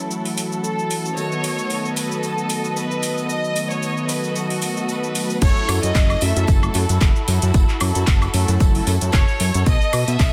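Swung sixteenths at 113 BPM in 4/4 drive this sensual, cosmic nu-disco excerpt in F# dorian, moving between F#m7 and B7. A house drum kit of metallic hats, handclaps, cabasa, woodblock and crash cymbal sits with a very quiet tambourine, under pumping chords from mellow, brassy synth brass with chorus and from dark, sul tasto studio strings passing through a low-pass filter sweep. A rich chamber violin section carries the melody with vibrato and delay from 0.6 seconds; at the drop at 5.4 seconds a fat, detuned sawtooth analog bass and a punchy, up-front electronic kick arrive, the synth brass stops at 9.0 seconds, and the dense, heavily limited mix carries light reverb.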